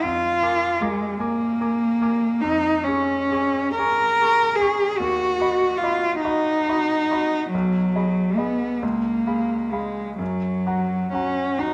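A single bowed cello carries the melody up front, its rich tone shaped by vibrato, soft attacks and expressive portamento as it moves between F#3 and A#4. Beneath it, a grand piano supplies accompaniment with a bright, polished sound and short sustain, spanning from B1 up to D6 and sitting lower in the balance than the cello. This elegiac, solemn romantic classical duo moves in 6/8 at a slow 42-52 BPM counted in dotted quarters, with a free, rubato feel, tuned to A4 = 439 Hz. The harmony passes from Bb7/F through C#/E#, B/D#, B6 and C#7 before settling on F# at 10.2 seconds. Both instruments play throughout this 11.7-second fragment cut from a longer piece, framed by a moderate recital hall reverb.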